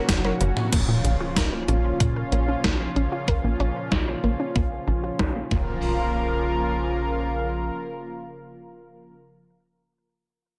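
A lush, detuned pad sits up front in light digital ambience, pumping gently against an overdriven, thumpy kick and a gated 80s drum machine whose snare, toms, hi-hat and crash are dulled by low-pass filtering. This nostalgic, cinematic synthwave excerpt in Bb minor moves at 94 BPM, opening with a drum fill over Gb before the harmony shifts to Bbm at 0.7 seconds. There, a background impact lands and filter sweeps open across the drums, the tight, punchy sawtooth sequencer bass and the round, tape-echoed analog pluck arpeggios until 5.8 seconds. The drums stop just before then, the pluck drops away at 6.1 seconds, and the pad and bass carry the closing section.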